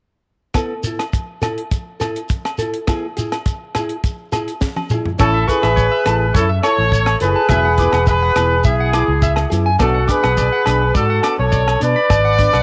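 Danceable and carefree, this highlife guitar band excerpt moves in a straight 4/4 groove. A fingerpicked nylon-string guitar, warm and small with a touch of finger squeak, opens at 0.5 seconds alongside a tight, dry funk drum kit with a high-tuned snare, tight kick, hi-hat, rim clicks and toms up front, while ringing agogo bells sit in the background and a grainy, mellow shekere adds texture. A drum fill at 4.6 seconds leads into the fuller second section at 5.2 seconds, where a punchy, bright horn section takes the melody with vibrato and a smooth, pop-style top. At the same moment a twangy, slightly broken-up electric guitar enters with picked arpeggios carried by tape echo, and a dark, round fingered electric bass anchors the low end. Light reverb gives the whole band a gentle sense of space.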